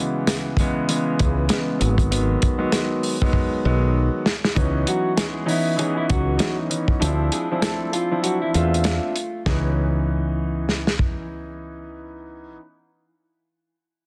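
A swung boom-bap hip-hop groove at 98 BPM in 4/4 carries this reflective, dark C# minor passage, cut from a longer piece. A dark baby grand piano opens alone at 0.0 seconds, its mellow, vintage tone carrying long sustain through a cassette-tape haze and filtering, moving from C#m7 to G#m7. A soul drum kit enters just after with a dry, muffled, lo-fi sound, a tight kick and a medium-tuned snare, playing a fill before the harmony shifts to C#m9 at 4.6 seconds. A woody fretless bass sits up front with a growly, round, hollow-body character. A clean, fingered electric guitar carries the melody from 4.9 seconds, filtered and touched with digital delay. The kick drops out as the chords move to Dm9, then returns as the piece resolves back to C#m9, all held in light studio reverb and a dense, heavily limited modern master.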